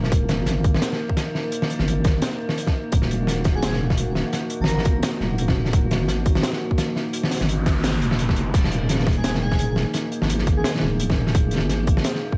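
This tense, heavy half-time drum and bass piece at 171 BPM in Eb phrygian opens with a dark analog pad of detuned sawtooth chords, a deep, square-wave wobble bass thickened by chorus and tube saturation, and an eerie, metallic FM drone with ring modulation and its own reverb lurking in the background. A hard-clipped electronic kick sits up front beside a crunchy, gritty breakbeat kit with a high-tuned snare and dark cymbals, swung on the 16ths, while the pad pumps under sidechain compression. An airy, dreamy lead with phaser, tape echo and vibrato drifts in briefly at 3.6 and 9.2 seconds, and an electronic noise sweep passes through between them at 7.4 seconds, all in a small room with light reverb and a rolled-off top.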